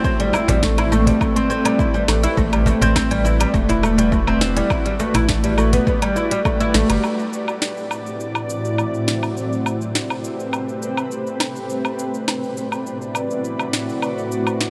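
Organic downtempo with a meditative mood, cut from a longer piece: a cloudy, evolving granular pad holds blurred sustained chords under its built-in reverb and a shimmer reverb, while an up-front, woody plectrum-plucked oud plays arpeggios through tape echo and shimmer, and a round sine sub bass pumps beneath them. A produced afro-pop kit of cabasa, crisp hi-hat, sharp snare and woodblock runs throughout, joined by a punchy, overdriven layered electronic kick until 6.6 seconds and a snappy, close cajon in the background. After a band accent at 6.7 seconds, the oud, cajon and bass stop at 7.0 seconds, leaving the pad and kit floating in a huge ambient reverb.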